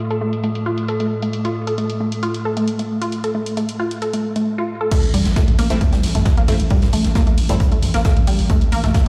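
An eerie, warbling FM drone and a squelchy, detuned blip pluck riff open this intense, relentless excerpt of driving peak-time techno at 134 BPM, alongside a dry analog drum machine's filtered hats, ride, crash and toms under a filter sweep over an F/A chord, until the drop at 4.9 seconds brings an up-front punchy kick, a faint brushed jazz kit, a growling, buzzy 808-style bass on A1 and, from 5.7 seconds, a background supersaw stab with dub echo. The bass, stab, pluck and drum machine pump with the sidechain, all sitting in a stone room reverb as if played on a big sound system in a bare room.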